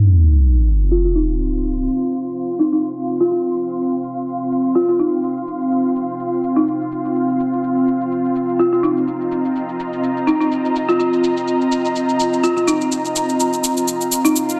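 Swaggering and bouncy, this bass house passage, cut from a longer piece, rides a swung sixteenth-note groove in four. An up-front electronic sub drop hits at the start and runs until 1.9 seconds, and a swell arrives at 14.5 seconds. Throughout, an up-front ethereal, airy pad of detuned sawtooth and triangle voices with a sub octave holds a sustained, mellow texture through ensemble chorus and its own reverb, while a layered, overdriven electronic shaker runs under a filter sweep. From 0.9 seconds a folk marimba played with medium hard mallets carries a narrow melody, its dry, woody hardwood tone roughened by vintage 12-bit sampler grit and trailed by delay. The mix sits in a lush hall reverb with a dense, heavily limited modern master.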